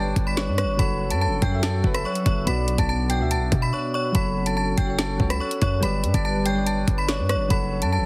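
A ringing, inharmonic FM bell carries the melody up front over soft, round electric-piano-like synth keys, a warbling, detuned tape-like pad in the background and a punchy, heavy 808-style bass, with an overdriven drill kit of knocking kick, woody snare, rim click and bright hats entering at 0.2 s in this dark, menacing half-time drill excerpt at 143 BPM in F# phrygian, which has a short break from 3.7 to 4.1 s and a dry, heavily compressed radio sound.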